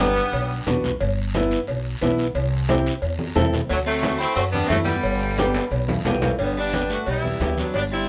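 This festive, joyful cumbia excerpt opens with an edgy, jazz-style saxophone section carrying the melody up front with vibrato, joined by a clean, picked electric guitar playing a second line, over a boxy, fingerpicked flamenco guitar with audible finger squeak and a woody pizzicato upright bass. The horns and electric guitar drop out after 0.8 seconds and return at 3.7 seconds, while the flamenco guitar and bass hold the chords of G, C and D7 at a brisk 178 BPM in straight 4/4. A raspy guiro sits close and dry, low-tuned congas with soft hands ring compressed and saturated in the background, and a vintage, band-limited cowbell and timbales add metallic ring. A drum fill at 5.5 seconds leads into a new section near the end, with the sax line and electric guitar riding on top. Moderate studio reverb gives the ensemble a modest studio ambience.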